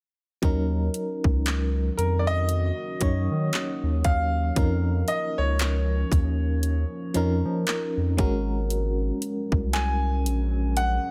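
Overdriven trap drums, with a hard-clipped kick, bright hi-hats and handclaps, sit up front beside a round, deep analog bass in this moody, longing piece of contemporary R&B with a swung feel, cut from a longer track. An FM electric piano with tremolo and a noisy edge provides accompaniment from 0.4 seconds, and a dark, detuned pad with chorus and reverb hangs in the background from 1.9 seconds. At 2.0 seconds a brilliant, intimate baby grand piano with tape echo and audible action noise carries the melody over chords moving from Ebm7 to Db69 and Ab9sus4.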